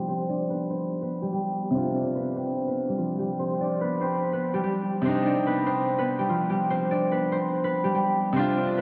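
Soaked in a lush hall reverb and dulled by a low-pass filter, this cold, dark hip hop excerpt moves at 145 BPM in a half-time feel in C harmonic minor, opening on a Cmadd9 chord, where an up-front, ringing, thumb-plucked concert harp carries the melody through tape echo over a brilliant, vintage grand piano accompaniment with deep bass and subtle chorus, both playing throughout as a filter sweep runs until 5.0 seconds and the music shifts into a new section.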